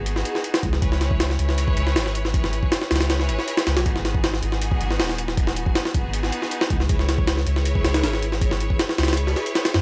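A dry, gritty hardware sound with transformer saturation, vinyl crackle and a faint mains hum frames this atmospheric, frenetic jungle-flavoured drum and bass excerpt. An overdriven, compressed sampler-style kit, pitched up with a thumpy kick, high-tuned snare and hi-hat in studio reverb, sits up front alongside a deep, round, soft sub bass. Meanwhile a close, bowed string section holds bright, vibrato-rich chords moving between G#m7 and C#m7, and the kick drops out at 9.2 seconds.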